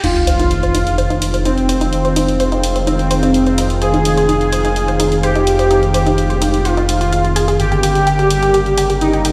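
A straight 4/4 pulse drives this dark, dramatic melodic techno excerpt. A tape-toned analog drum machine plays crash cymbal and hi-hat beneath a deep, rumbling detuned saw bass, while a sub drop sounds only in the first 1.9 seconds. Up front, a bold, bright unison lead sings with vibrato through subtle chorus and digital delay, as an airy chorused pad holds sustained chords and a full-bodied unison pluck spins arpeggios through tape echo in the background, all inside a lush hall reverb heard over a big sound system in a bare stone room, with the harmony moving from Fm7 to Gdim at 7.6 seconds.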